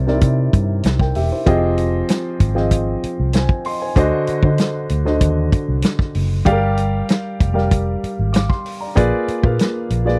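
Lush 1970s-style soul at 96 BPM in a straight 4/4, this romantic excerpt is tuned slightly low, to A4 = 439 Hz. A concert grand piano sits up front with a dark, mellow, smooth tone and a deep, vintage low end, carrying the accompaniment through rich chords: C7, Fm9, D7b9, Gm7 and Bb7b9. Beneath it, a foam-muted, fingered electric bass gives a round, amped sound. The drum kit of hi-hat, kick and snare comes in at 0.1 s, with a tight kick, a medium-tuned snare, and a mid-forward, rolled-off top that keeps it cozy and up front. The whole piece has the dry, close feel of a 1970s studio with little reverb, so each part sounds intimate and present.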